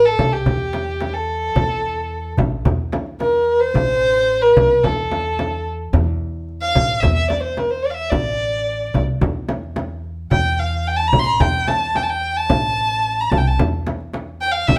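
Soulful and longing, this Arabic maqam ensemble piece moves at 110 BPM in a straight 4/4, rooted in maqam bayati on A with tuning at A4 = 439 Hz. A single bowed violin carries the melody up front between G4 and C6, its dark tone shaded with vibrato, while an upright bass plucks thumpy gut-string notes from A1 to E2 beneath it. A deep, close and dry frame drum sits prominently alongside a clay-shelled darbuka in the background, all captured live in one room with light reverb in this excerpt cut from a longer piece.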